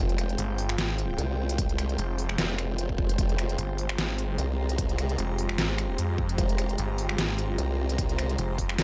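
Heavy and aggressive, this excerpt of half-time wobble dubstep at 150 BPM in F minor sits on a single F minor chord, with a detuned, saturated formant-sweep wobble bass and a growling, unison distorted saw bass from 0.4 s grinding up front under dark, bowed chamber strings pumping through a low-pass filter, a blurred granular cloud pad in the background, crisp hats, snaps and a deep snare, and a punchy tape-warm electronic kick arriving at 1.6 s, all in a dry mix.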